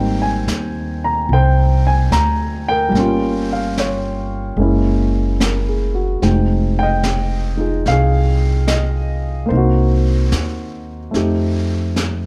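Smoky and intimate, this jazz ballad excerpt moves with a gentle swing in 4/4. A concert grand piano with a dark, mellow tone and a deep low end sits up front, voicing the accompaniment through rich chords such as Abmaj9, Gm7b5, Gb9 and Fm7 before settling on F7. An upright bass plays pizzicato alongside it from the opening, its steel strings giving a woody, growly sound that is also close and present. At 0.5 s a brushed drum kit joins on snare and hi-hat, heard distant and roomy, with a high-tuned snare and a rolled-off top. Light reverb and a warm production wrap the trio in a hushed, late-night atmosphere.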